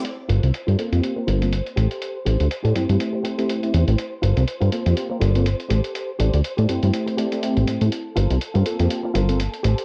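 Filtered disco house with a groovy, funky swing, cut from a longer piece and built on a Gm11 to Am7 vamp beneath a filter sweep that runs nearly its whole length. A punchy, up-front analog bass with a plucky sawtooth bite anchors a detuned, warbling polysynth comp coloured by chorus and phaser, while a twangy, direct-recorded clean electric guitar riff carries gritty 12-bit sampler character. A compressed electronic hi-hat re-recorded in a large room sits low, a dark, lush violin section holds sustained chords with vibrato in the background, and light digital reverb surrounds the mix.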